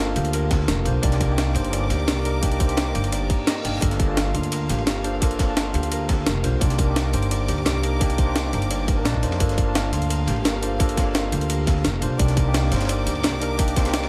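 Dreamy and melancholic, this liquid drum and bass excerpt sets a clean tine electric piano, coloured by vintage 12-bit sampler grit and delay, over a woody, thumpy pizzicato upright bass up front, while a soft-attack bowed string section pumps with sidechain in the background, a bright thumb-plucked Celtic harp plays ringing arpeggios through dub echo, a tight layered electronic kick anchors a compressed sampler-style breakbeat kit and a dark, saturated second breakbeat kit set further back, and a reverse cymbal appears at 3.3 seconds, all over chords alternating between Gm9 and Cm9.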